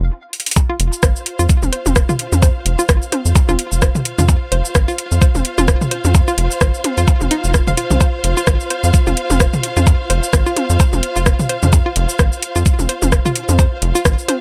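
A swung sixteenth-note groove in 4/4 drives this hypnotic, cool minimal techno excerpt, cut from a longer piece. A rubbery, bouncy square-wave bass opens alone, a brief stop follows, and a drum fill at 0.3 seconds leads into the drop at 0.6 seconds, where the kick, percussion and strings arrive, with the pluck following a moment later. An overdriven, knocking electronic kick sits up front, joined by a garage kit of metallic hi-hats, rim clicks and shaker carrying its own overdrive, while electronic percussion blips and toms ring out through digital delay. The saturated, resonant bass pumps against the kick with a fast filter pluck. Above it, a hollow, detuned square pluck riff, wave-folded with a sub octave and treated with chorus and delay, adds a mellow, short-decay figure, while a lush, bowed string section with vibrato and a smooth top pumps softly in the background. Light reverb gives the mix a modest sense of space.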